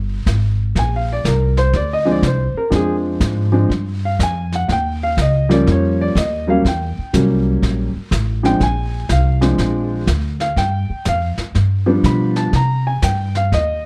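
A dark, lightly reverberant production sets a sophisticated jazz piano trio in a studio room, swinging at 122 BPM in 4/4 around Bb mixolydian. A woody, thumpy pizzicato upright bass opens at 0.0 seconds, brushed drums with a punchy kick and rolled-off top join softly behind it at 0.3 seconds, and a smooth, vintage grand piano with plate reverb enters up front at 0.8 seconds to carry the solo. The harmony moves through Bb9, Eb9 and Edim7, returns to Bb9, then passes through G7 to Cm7 in this short, warm cut from a longer piece.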